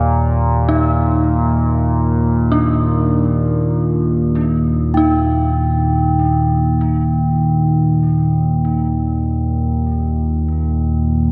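Ominous and cavernous, this dark ambient drone in Eb major drifts in free time, built on an evolving, nasal analog drone that sits up front with chorus. A dark, detuned synth bell traces eerie, inharmonic arpeggios through chorus, phaser and tape echo, while a quartz singing bowl enters at 4.9 seconds with a pure, ringing tone and slow beating. A wet cathedral reverb with a 5.8-second decay surrounds this short cut from a longer piece.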